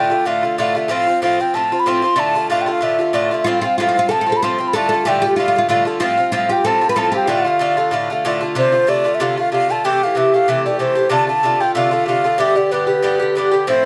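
An airy wooden baroque flute carries the melody from the outset, its vibrato and crisp attack riding over a metallic, up-front Irish bouzouki whose picked double strings supply the accompaniment in this driving, dark and lively Celtic reel with a lilting swing. From 3.4 to 8.2 seconds a bright, woody oud adds a second line, its plectrum-plucked, fretless double strings sitting lower in the mix. The tune moves from alternating minor and major chords into a new section at 8.6 seconds, all captured by close, detailed microphones with light reverb in this cut from a longer piece.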